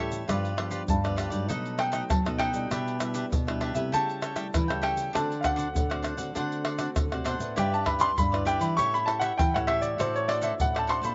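Lively and joyful, this samba and choro excerpt at 99 BPM in G major features a warm baby grand piano carrying the melody up front with slapback echo from 0.9 seconds, over crisp picked cavaquinho, also with slapback echo, a background nylon-string guitar with audible finger squeak, a dark thumb-plucked nylon-string guitar bass, and close, dry tube shaker, pandeiro, tight surdo and tamborim played with soft hands, all in a dry outdoor sound with a muted top end as the chords move from G7 through B7 and Em7/B to D7/A.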